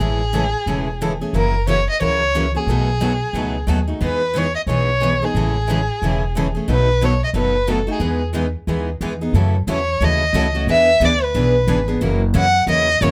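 Heard up close, with detailed microphones and a light reverb, the players sound close at hand. This charming, lively clip of acoustic string swing in the jazz manouche style has a swung feel in 4/4 and is cut from a longer piece. A single dark, bowed violin carries the melody up front, its soft attack, vibrato and portamento giving the line an expressive, singing quality. Two picked steel-string acoustic guitars accompany throughout, one a full-bodied jumbo and the other a parlour guitar with fresh strings, both bright. Underneath, a pizzicato upright bass with gut strings sounds woody and thumpy, sitting forward in the mix. At 9.3 s a new section begins, with the harmony moving through F#m7, E7 and F#7.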